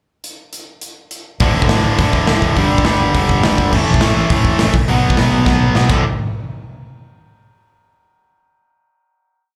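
Heard through a club PA with some room reverb, this short, upbeat and rowdy punk rock piece charges along at 206 BPM in D major, opening with a big, bright rock drum kit playing a pickup bar alone from 0.2 seconds. At 1.4 seconds two overdriven electric guitars kick in with driving quarter-note power chords through D5, G5, A5 and B5, the biting one up front and the crunchier one behind it, both carrying a slapback echo, while a growly, amped fretless bass pushes eighth notes underneath. A drum fill leads into the final hit at 6.0 seconds.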